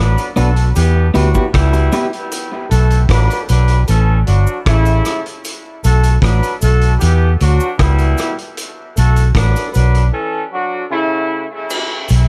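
Dub reggae in a meditative, heavy mood, this short excerpt rides a round, foam-muted electric bass up front, with a gritty vintage drum kit of tight kick, dark cymbals, hi-hat and rim click, plus a close, dry cabasa in the background. A horn section with light vibrato carries the second line through dub echo, while an electric guitar at the edge of break-up, soaked in spring reverb and dub echo, appears only briefly from 0.4 to 2.1 seconds. The chords circle Bm, Em and A, and a break arrives at 10.1 seconds before the horns drop out at 11.5 seconds.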